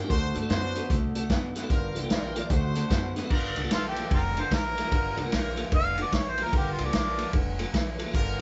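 A tonewheel organ with slow rotary speaker, overdrive and chorus vibrato opens this brooding electric blues shuffle alongside a slightly broken-up, picked guitar riff from a small old amp, its low lo-fi tone bathed in spring reverb. Almost at once a vintage drum kit, an upright bass and a brilliant, tight horn section join in, setting a mournful 149 BPM swing in G minor over changes that move between D7 and Gm7. The drums sit up front with a punchy kick, medium-tuned snare and dark cymbals, while the pizzicato bass has a woody, steel-string sound and the piping organ adds key click beneath jazz-style horn stabs. At 3.7 seconds a mellow, overdriven harmonica takes the melody in a jazz-style solo, with a soft attack, scooped notes, tongue slaps and a roomy presence. The band plays live in one room with light reverb and a rolled-off, dark top end, and this short excerpt is cut from a longer piece.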